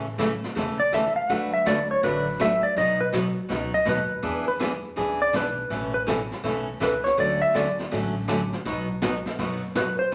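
Vinyl crackle and a large, wet studio reverb give this short country and western swing excerpt a vintage, down-home sheen. At 163 BPM in 4/4 with a swung eighth-note feel in A major, a bright, full-bodied dreadnought acoustic guitar sits up front, picking the accompaniment from the first moment alongside a woody, dark pizzicato upright bass that stays in the background. A vintage brush kit joins at 0.2 s, sounding distant and roomy, with a punchy kick, a medium-tuned snare and hi-hat, and a rolled-off top. At 0.8 s a clean, twangy lap steel guitar steps forward to carry the melody as a slide solo, the loudest voice in the mix. Underneath, the changes move through A, D6, B, E7, Aadd9, Dmaj7 and back to B, keeping the swinging mood going.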